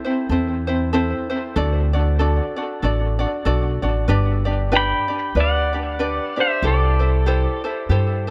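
Sunny and languid, this short Hawaiian excerpt drifts along in a swung 4/4 over chords moving from Am through D and G to a closing C6. A light, fingerpicked acoustic ukulele carries the accompaniment from the start, its notes trailing a dub echo, and a woody, thumpy pizzicato upright bass on steel strings joins at 0.3 seconds with a warm bottom. At 4.8 seconds a bright, clean electric pedal steel guitar takes the melody up front, played with fingerpicks and slide, compressed and shaped with volume swells, its notes also repeating through dub echo. Just before it, at 4.7 seconds, a felt-muted upright piano slips in behind as a second line, dark and intimate with a short sustain, soft thick-felt tone and audible action noise. The echo-heavy mix sits in light studio reverb, giving the small group a relaxed, hazy glow.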